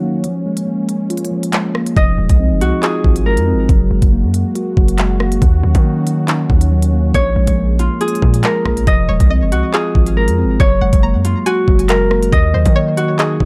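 A dark, digitally ambient production gives this ominous, tense drill excerpt a brooding, half-time sway. A mellow tine electric piano, filtered and clean as if heard through built-in speakers, lays down the chords from the start. A sweeping, detuned sawtooth pad warbles with vintage resonance beneath it until 8.9 seconds. The electronic drill kit sits up front with a knocking kick, crisp hi-hats, handclaps and rim clicks, and at 2.0 seconds a fingerpicked Celtic harp carries the ringing acoustic melody through a low-pass filter and digital delay, joined by a punchy, heavy 808-style bass with a sine body and a noise layer. From 9.1 seconds a bright, twangy, string-like resonator pluck adds a quiet second line, its filter sweep, chorus and delay giving it a shimmering edge.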